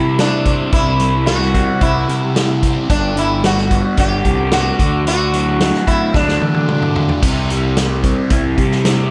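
A straight 4/4 pulse at 111 BPM drives this hypnotic, mysterious psychedelic rock excerpt, with an up-front vintage drum kit of dark cymbals, tight kick and medium-tuned snare entering at 0.2 s and playing a fill from 6.1 s. A buzzing, shimmering sitar with sympathetic strings and tape echo carries the melody until 6.9 s over a dark, double-tracked fuzz guitar riff coloured by phaser and an overdriven fingered bass, the harmony moving from C to G, D and back to C. Light reverb and small room ambience surround the playing, and the drums have a rolled-off top.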